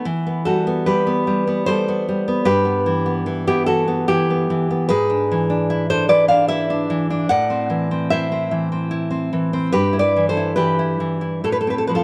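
A fingerpicked nylon-string guitar, full-bodied and placed up front, carries this wistful, intimate romantic solo for classical guitar through a 12-second fragment of a longer piece. Played in 3/4 with rubato and uneven beats, it moves from Em through E7/G# and Am before reaching F/A. A moderate plate reverb with a 2.7-second decay gives the guitar a soft halo.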